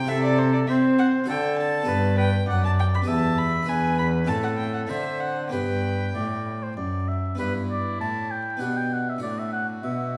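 A lush recital-hall reverb and a vinyl crackle frame this short, serene classical fragment, a baroque-style sonata movement with continuo in G major that moves at a dance-like 98 BPM in 3/4. A dark, nasal violin with a gut-string, period-style tone carries the melody, while an oboe, soft in attack with light vibrato and a smooth top, sits up front on a second line entering at 0.1 seconds. Beneath them, a bowed cello with a reedy, warm period sound holds the bass and stands out as the strongest part. A bright, plucked harpsichord in the French style fills in the accompaniment. The harmony moves through Am/C, D7, G, Em and E7 before a new section begins at 7.4 seconds and closes on G/B and D/A as the passage breaks off.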